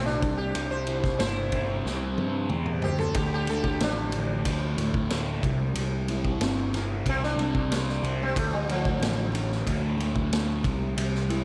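This dark, trippy psychedelic rock passage, cut from a longer piece, opens with a buzzing, shimmering sitar solo over a double-tracked fuzz guitar riff and a punchy, overdriven picked bass, with a vintage drum kit joining almost at once. The sitar's plectrum-plucked lines ring with sympathetic strings and trail into a diffuse ambient delay, while the distorted guitar carries a phaser. The drums sit up front with a gritty, saturated character, dark cymbals, a tight kick and a medium-tuned snare. They break into a fill at 1.9 seconds, and quiet, high-tuned congas with hard hands slip in at 3.5 seconds. At a straight 92 BPM in 4/4, the harmony sways between C and D minor, and the sitar drops out at 9.3 seconds as the band rolls on. The whole mix is dreamy and soaked in a cathedral-sized reverb.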